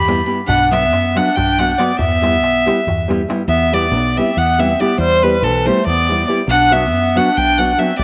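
A driving 7/8 pulse at 280 BPM in eighths, played straight, carries this restless, fiery Balkan wedding-band tune in E minor, cut from a longer piece. A clear, earthy bowed violin with light vibrato leads up front, while a soft-attacked classical clarinet with slapback echo plays a second line beneath it, over a round, punchy fingered electric bass and a fingerpicked nylon-string guitar moving through Bm, Em and back to Bm. A crisp, deep metal-shell darbuka sits close and dry in the background until 3.4 s, and a wet spring reverb colours the recording.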